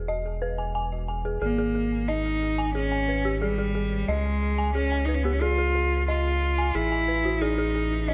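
A light reverb and small-room ambience frame this eerie, intricate IDM fragment, cut from a longer piece at 90 BPM in straight 4/4 and tuned to A4 = 441 Hz. A round, deep analog bass with tube saturation sits up front from the start, while a dark, detuned FM synth bell with inharmonic tones, chorus, delay and 12-bit sampler grit spins mellow, decaying arpeggios. At 1.4 seconds a clear, focused cello played by a single player enters with a bowed, vibrato melody, carrying the same grit and delay over chords of Absus2, Db and A5.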